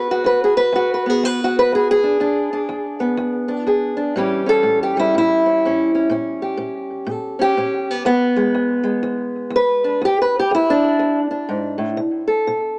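A fingerpicked old ladder-braced acoustic guitar carries this short cut from a longer acoustic country blues piece, playing solo and sitting up front from 0.0 to 12.8 seconds. Its tone is dark and boxy, with the dull bite of old strings and a touch of analog delay trailing behind the notes. The mood is rollicking and gritty, set at 122 BPM in 4/4 with a swung eighth-note feel and tuned slightly below standard pitch. The harmony moves from E7 to A7, passes through A#m6 and back to E7, then lands on a bare B7 near 12.0 seconds, spanning the guitar's range from E2 to B4. Light reverb and a small-speaker character give the recording a rough, lo-fi intimacy.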